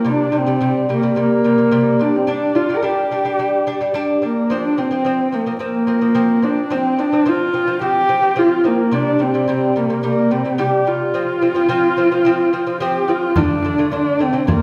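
Mongolian folk at a galloping 108 BPM with a vast mood, this brief excerpt sets a dark, husky horsehead fiddle melody, bowed with vibrato and portamento, over delicate fingerpicked arpeggios on a gut-strung, double-coursed lute, both up front in a reverberant recital hall, before a close, dry frame drum joins at 13.4 s.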